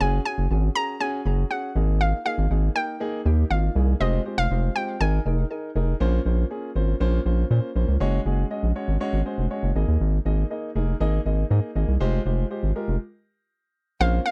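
A hollow, bouncy square-wave pluck with chorus carries the melody from the start, over concert grand piano chords and a deep, round analog bass sitting up front, in a euphoric, upbeat dance-pop excerpt with a straight 4/4 feel. The pluck drops out at 5.7 seconds while piano and bass move through sus2 and minor add9 harmonies, then after a stop at 13.0 seconds the pluck briefly returns at 14.0 seconds. The sound is dry and close, like a 1970s studio recording.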